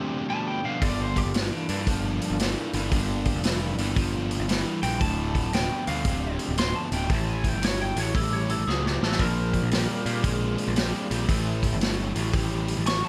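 Heavy and gritty, this excerpt from a longer piece blends blues rock power trio and southern rock at 115 BPM in 4/4, with a swung eighth-note feel in D minor. A distorted, double-tracked electric guitar drives a low riff up front, and a twangy, slightly broken-up lead guitar enters at 0.3 seconds with a compressed, bright melody high above it. At 0.8 seconds a growly, overdriven picked bass joins alongside a vintage acoustic drum kit whose punchy kick, medium-tuned snare and hi-hat sit mid-forward in a studio room, with a rolled-off top. Beneath them, a very quiet, lightly overdriven tonewheel organ holds full, percussive sustained chords with second-harmonic percussion, chorus vibrato and a slow rotary speaker. The harmony moves from Dm7 through Gm7, A7 and Bb7, and a drum fill at 8.7 seconds leads into the Bb7 chord, all set in light reverb.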